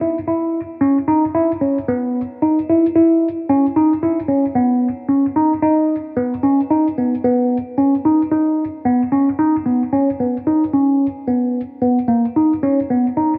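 In a straight 5/4 at 112 BPM, this tense, intricate progressive instrumental excerpt features a lone tine electric piano playing solo from 0.0 to 13.3 s, staying between A#3 and E4. The worn, slightly out-of-tune electric piano sounds clean through a combo amp with a phaser, sitting up front in a moderate plate reverb with a 3.0 s tail. The music moves into a new section at 9.9 s.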